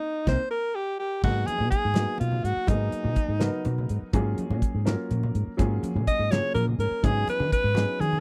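A bright alto saxophone opens this nocturnal, slick fragment of dry, close 1970s-style electric jazz fusion in 6/8, singing up front with vibrato and scooped notes over a band accent and a drum fill that end at 1.2 seconds, while a damped drum kit with dark cymbals and a tight kick, a bright fingered electric bass pushed through an envelope filter, a boxy, worn baby grand piano with audible action noise, and low-tuned congas in the background carry on beneath the saxophone as it rests between 3.9 and 6.1 seconds.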